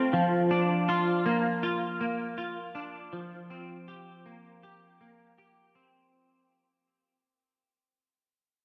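A dreamy mix soaked in long plate reverb frames this brief, floating fragment of ethereal dream pop, cut from a longer piece and fading out over its first 6.1 seconds. A lone semi-hollow electric guitar sits up front, its bright, clean, picked hollow-body tone thickened by ensemble chorus and tape echo as it moves from Bb/F to C7sus4. The guitar plays solo in a straight 4/4 until 6.7 seconds.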